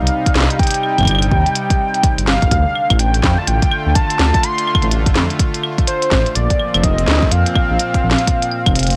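Intricate and melancholic, this IDM excerpt moves at 125 BPM in 4/4 with a 62% swing on the sixteenths, tuned to A4 = 442 Hz. A velvety, detuned sawtooth lead carries the melody between C5 and C6, touched with vibrato, chorus and analog delay, while a smooth analog pad holds sustained chords beneath it, its soft attack and long release roughened by chorus and vintage 12-bit sampler grit. Up front sits a dark, rumbling saw bass, deep and beating from its detuned unison voices, spanning F1 to F2. A glitchy kit of clicky hats, a tiny snare and claves enters at 0.1 seconds, joined by a deep electronic kick from 0.3 seconds, both re-recorded in a small room. The harmony passes from Cm to Dm7 and on to Bb5, and the whole is a dry, gritty hardware recording with transformer saturation and cassette tape colour.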